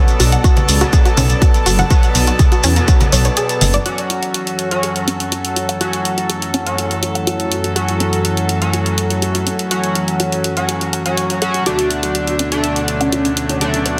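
Clear, floating bowed strings and edgy, nasal sync-sweep polysynth stabs with chorus, tape colour and delay open this dramatic, melancholic melodic techno excerpt. Layered electronic hi-hats and congas, grainy background maracas, a lush unison pluck arpeggio and a menacing, evolving detuned saw bass pumping up front come in, followed moments later by a punchy kick. After a short break the kick, bass and maracas are gone, and from 3.9 seconds a filter sweeps the strings, a deep, moody ambient pad drifts in behind at 5.7 seconds, and at 11.7 seconds a thick, bold unison lead with vibrato and dub echo sings over a lush hall reverb and a dense, heavily limited master.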